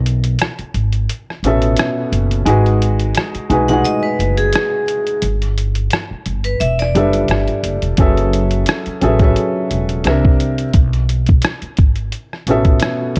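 A felt-muted upright piano, soft and intimate with audible action noise and a cassette-tape sheen, enters at 1.4 s in this nostalgic, melancholic lo-fi hip hop excerpt at 87 BPM with a gentle 16th-note swing. Underneath, a woody pizzicato upright bass and a compressed, muffled sampler-style kit of thumpy kick, hi-hat and rim click sit up front. A metallic, ringing vibraphone struck with hard mallets adds a bright second line through analog delay from 3.7 to 7.8 s, over jazzy chords such as B9sus4, G#m7 and F#m11 in a small room with light reverb.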